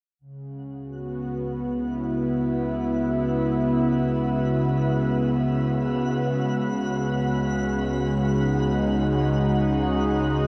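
A smooth, detuned sawtooth pad with chorus sits up front in this reflective, melancholic ambient excerpt at 58 BPM in 3/4, holding C#m7 before shifting to B69/C# at 6.4 s, while a round sine sub bass fades in beneath it, a warbling, wave-folded analog drone with chorus enters in the background at 1.3 s, and a twinkling granular texture with an octave-up shimmer fades in high above, set inside a wet shimmer reverb.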